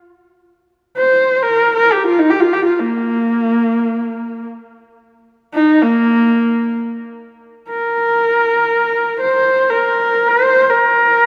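A single clear, husky horsehead fiddle enters at 1.0 s and carries this proud, galloping Mongolian traditional piece alone in free time in Bb zhi mode, its focused bowed line ranging from Bb3 to C5 with vibrato and portamento, set in a lush hall reverb within a rough home demo mix and cut from a longer performance.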